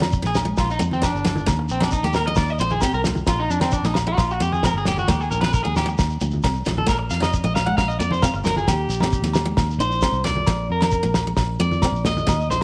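Highlife guitar band music, warm and danceable in a straight four, cut from a longer piece and alternating between Bb and Eb chords. A twangy, slightly broken-up electric guitar plays up-front arpeggios with slapback echo from 0.3 seconds, over a bright dreadnought acoustic guitar picking in the background and a dark, round, foam-muted fingered bass. A dry, damped 70s kit with a fat snare and tight kick drives the groove, joined by ringing agogo bells, very quiet low-tuned congas and a grainy, mellow shekere, all in a light small-room ambience.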